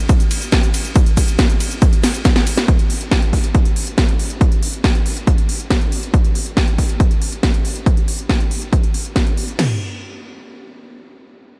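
This trance excerpt opens on a drop, with two layered electronic drum kits entering together at 0.1 seconds at 139 BPM in a straight 4/4. The louder kit carries a punchy kick, crash cymbal and toms, while the second kit adds smooth hi-hats, ride cymbal and shaker. Both kits have a cracking snare, sit up front in the mix, and take on the close character of a small room. A drum fill arrives at 2.0 seconds to close out the drop before the kits press on into the next section. The overall sound carries light reverb, and the mood feels soaring yet bittersweet until the last drums stop at 9.7 seconds.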